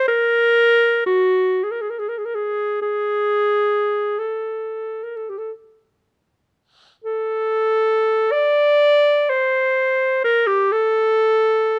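A clear, present clarinet sits up front in light reverb for this serene, lyrical classical excerpt, playing unaccompanied in a free, expressive rubato in 3/4 at roughly 32-67 BPM, its melody ranging from Gb4 to D5 and moving into a new section at 7.1 seconds before the cut at 11.8 seconds.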